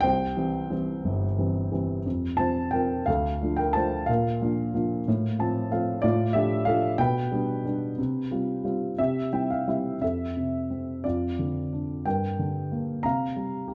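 A moderate recital-hall reverb of about 1.5 seconds surrounds a dark production in this short cut from a longer piece. It is tender, calm classical music for solo upright piano in F major, moving at 60 beats per minute in dotted quarters through a 6/8 metre with free, rubato timing. The piano sits up front with a mellow, woody tone and a short sustain, spanning G1 to Bb5. It adds brief fills at 5.1 and 9.0 seconds as the harmony passes through Dm, Bb, F/A and G/B before settling on C. From 10.0 seconds a second section opens on F and moves through Dm/F and Gm, ending poised on Csus4.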